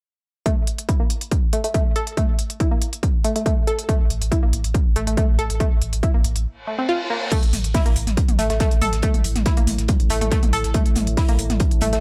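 Set in a digital ambience, this dark, hypnotic excerpt of driving peak-time techno at 140 BPM runs on an up-front, tape-warm electronic kick drum and a techno drum kit with smooth hats, crash and toms, under a bright, detuned, wave-folded analog pluck riff with chorus, delay and sidechain pumping. A thick, saturated sub bass enters at 4.0 seconds, and a reverse cymbal fills a brief break leading into the second section at 7.3 seconds. There a cloth-damped, thuddy acoustic kit with a fat snare and rolled-off top sits in the background, joined at 8.8 seconds by a deep, moody ambient pad with ring modulation and a sub octave.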